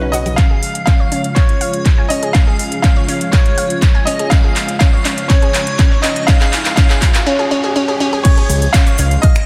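Progressive house at 122 BPM in Db mixolydian, euphoric and hopeful, where a clear, intimate baby grand piano with audible action noise and tape echo carries the melody over a soft, dreamy background lead with chorus and vibrato, an evolving supersaw swell of sustained chords under a low-pass filter, round detuned analog pluck arpeggios with cassette tape color, a fat analog bass, a very quiet swell and riser, a metallic-hatted house drum kit with finger snaps, handclaps and crash, a grainy tube shaker and a punchy, up-front kick, all bathed in lush hall reverb within a dense, heavily limited master as a build-up and drum fill from 0.4 s give way to a break at 7.3 s and a pumping drop at 8.2 s.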